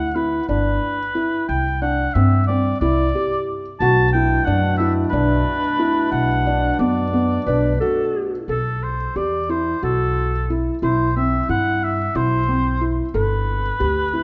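Contemporary chamber music in a restless, hypnotic 7/8 at 181 BPM in eighths, set in B phrygian, this short excerpt puts a warm, vibrato-laden oboe melody over arpeggios from a felt-muted upright piano, whose soft, intimate tone carries audible action noise, and a woody pizzicato upright bass sitting up front. A tight woodwind section adds sustained chords from 3.8 to 8.4 seconds, and a mellow, soft-attacked clarinet slips in a brief second line at 7.5 seconds before the music moves to a new section at 8.5 seconds. The whole sits in a dark production with a moderate concert hall reverb that lends the reed soloists a distant, roomy quality.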